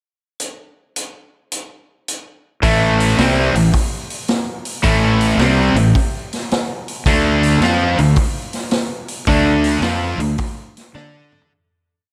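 A swung 4/4 groove at 108 BPM drives this swaggering blues rock and southern rock piece, as a punchy, rolled-off vintage drum kit opens with a pickup bar before a bright, overdriven, double-tracked stack guitar with spring reverb and a growly fuzz bass doubling its riff crash in at 2.6 seconds, moving from A5 to D5 in light reverb until a fade-out and a closing drum fill at 11.0 seconds.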